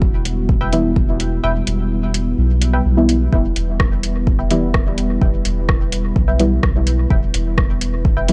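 A deep, tape-warm electronic kick drum sits up front in this cavernous, hypnotic dub techno excerpt at 127 BPM in E minor and drops out from 1.4 to 3.3 seconds, while a round, soft sub bass and a moody, detuned analog pad pump under sidechain, a vintage rhythm box adds metallic hi-hats and rim clicks through dub echo, and two chord stabs, one nasal and mellow with phaser and chorus, the other muted and filtered, decay into echo over a dry, gritty cassette-tape sound.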